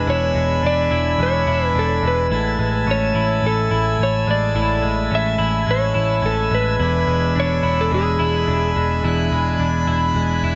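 A lush hall reverb surrounds this dreamy, blissful dream pop passage, and the top end is rolled off to give the sound a soft, hazy glow. At 107 BPM in a straight 4/4 and in A major, the piece moves from E7 to Amaj7 at 2.3 seconds and back to E7 at 6.8 seconds, cut from a longer piece and lasting 10.6 seconds. Up front, a bright, clean electric guitar picks arpeggios through an analog chorus and delay. Beneath it, a vintage muted electric bass sits low, round and punchy with a dark, foam-muted tone. A majestic full pipe organ holds sustained chords with brilliant mixtures and a romantic voicing, while a slightly broken-up, compressed slide guitar carries the melody with delay trailing its dusky, fingered lines.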